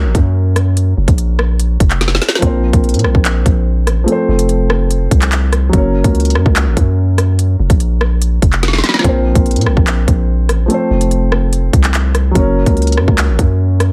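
Drill hip hop at 145 BPM in a half-time 4/4 feel, this dark, tense cut from a longer piece sets a mellow, intimate grand piano with audible action noise and a vintage tone over a deep, sine-like 808-style bass with fast attack and long decay, while an up-front electronic drum kit with a hard-clipped kick, woody snare, crisp hi-hats, handclaps and rim clicks adds fills at 2.0 and 8.6 seconds, all in a dry mix tuned to A4 = 442 Hz that cycles through Gb, Bbsus2 and F.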